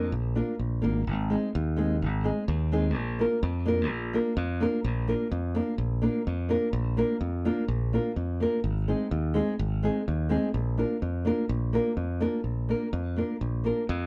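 Balkan folk in the manner of a wedding band, this exuberant, festive excerpt moves in a lightly swung two-beat metre over a simple shift between two chords. A small, thumb-plucked nylon-string guitar gives acoustic accompaniment up front, while a bright, growly, punchy fingered electric bass sits equally forward with a direct electric bite. A moderate small-room reverb and a dark, warm production frame the pair, with the guitar stopping at 13.8 seconds just before the bass closes at 14.1.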